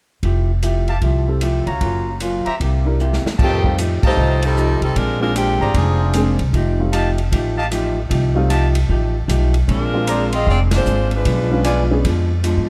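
A dark, lightly reverberant production frames this energetic big band swing excerpt in F major at 152 BPM, where a woody upright bass sits up front with an airy, polished drum kit, a clean hollow-body electric guitar and an intimate baby grand piano with audible action noise, while a clear trumpet section adds stabs from 0.9 seconds and a bright, softly attacked saxophone section carries the melody after a drum fill at 3.0 seconds.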